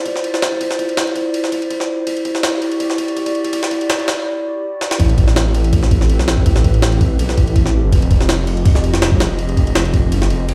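Atmospheric and frenetic, this drum and bass and jungle cut runs at 164 BPM in A minor, opening on a warbling, nostalgic pad of sustained lo-fi chords, chorused and dark, moving from Dm9 to Em9 while a gritty, pitched-up sampler-style kit with a thumpy kick and medium-tuned snare builds beneath it. After a short break and a drum fill at 4.8 seconds, the drop lands at 5.0 seconds, where a thick, menacing detuned saw bass enters up front, beating and saturated, as the chords shift to Am9 and then Fm9. The whole piece sits in a large reverberant room, with the compressed drums and bass pushed forward and the pad hanging behind them.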